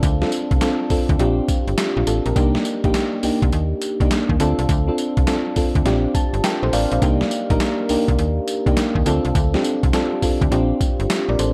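A dark, warm production sits in a moderate plate reverb, giving this short cut from a longer R&B piece a slick, bouncy new jack swing feel at 103 BPM in 4/4, with a 65% swing on the sixteenths in C dorian. A mellow FM electric piano carries the accompaniment throughout, its round, soft tone touched by chorus and a faint noise layer, cycling through Dm7, Bb69 and Cm9 chords. Underneath, a slap-like FM bass with a snappy, metallic attack holds the low end up front, its digital notes decaying after each fast attack. A boom bap sampler-style kit drives the groove with a thumpy kick, a medium-tuned snare, hi-hat, handclaps and tambourine, sounding gritty and compressed, as if re-recorded in a large room. The electric piano breaks into a brief fill between 5.9 and 7.0 seconds before the chord cycle carries on to the end at 11.5 seconds.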